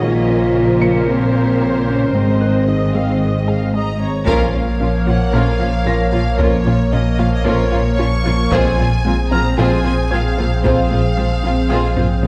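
A straight, steady four-beat pulse drives this relentless, vast cinematic cue, a hybrid of orchestral and electronic film scoring heard as an excerpt cut from a longer piece. At first, woody background violins, focused violas, smooth cellos and soft-attacked double basses sit under a hollow, airy chorused pad and mellow French horns, while a juicy, squelchy phased blip pluck runs very quiet arpeggios and a clear, vintage grand piano adds a faint high texture. A lush, vibrato-rich violin melody enters at 3.7 seconds, and at 4.3 seconds a band accent brings in a deep, round sub bass, distant dark trombones and a very quiet taiko ensemble struck with heavy sticks, which plays a fill at 12.0 seconds, all set in a moderate scoring-stage reverb with a dusky, warm production.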